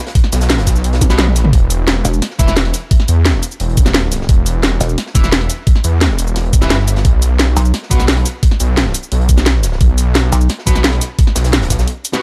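A dense, up-front mix with a digital ambience opens this tense, dark slice of technical drum and bass, cut from a longer piece and running at 174 BPM in straight 4/4. A knocking electronic kick and a layered drum and bass kit, with a cracking snare, bright hats, cabasa and toms, drive the groove, while a very quiet crunchy breakbeat kit sits underneath with a gritty, saturated, rolled-off character. A thick, lush detuned saw bass with chorus and overdrive holds the low end from E1 to E2, and a heavy pulsing pluck wobble bass, distorted and compressed, punches through in short bursts, first at 2.0 seconds. A fuzz guitar adds bright, double-tracked stabs with distortion and tape echo, entering at 1.1 seconds. The harmony centres on a B5 power chord, a drum fill lands at 1.0 seconds, and a break closes the passage at 11.9 seconds.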